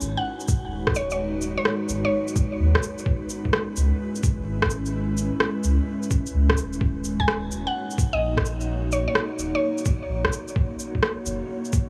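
A ghostly, melancholic future garage excerpt in G# minor at 128 BPM opens with an ethereal, airy pad carrying detuned chords through ensemble chorus and 12-bit sampler grit, over a round sine sub bass and an up-front, tape-warm shaker and rim click, all swung on the 16ths. A woody, mallet-like FM pluck sings its melody through chorus, cassette tape colour and dub echo from 0.2 to 2.5 s and again from 7.2 s, while a muffled, pitched-down, thumpy kick drives from 0.5 s, with the pad and bass both pumping under sidechain compression. The chords move from G#m7 through C#m7 and D#m7 to F#7, set in a huge ambient reverb with vinyl crackle and small-room ambience.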